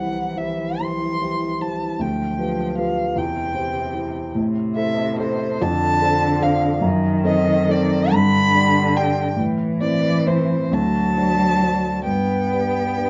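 In a 6/8 taken at roughly 43-52 dotted-quarter beats per minute, this slow romantic movement for piano trio breathes with a flexible rubato, tuned to A4 = 441 Hz. The mood is tender and serene throughout the 13.1 seconds, which are lifted from a longer piece. The bowed violin carries the melody within a range of C5 to C6, its tone dark and woody with vibrato, and it sits up front. Beneath it the bowed cello sings a second line between C3 and B3, warm and expressive with vibrato and portamento, heard from a more distant place. The baby grand piano accompanies across a broad span from C2 to D5, mellow and long-sustaining, also placed up front. A moderate studio reverb surrounds the trio as the harmony moves from C through G7/D, Am, Dm7/F and F#dim7 before D7 settles onto G at 12.1 seconds.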